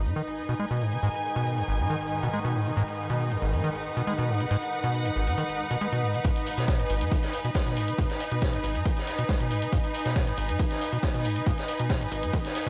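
A squelchy, overdriven acid bass riff with resonant filter plucks drives this dark, driving peak-time techno cut in G# minor at 138 BPM, pumping against a lush, vibrato-rich symphonic string section held up front throughout. Metallic electronic hi-hats tick from the start. A detuned, warbling drone with phaser swarms in the background from 0.6 to 6.3 seconds. At 6.2 seconds a build-up begins: the acid bass takes on a filter sweep, a punchy layered electronic kick arrives, and a saturated acoustic garage kit with a high-tuned snare sits behind it. The dry, cassette-tape recording has a gritty hardware character with light reverb.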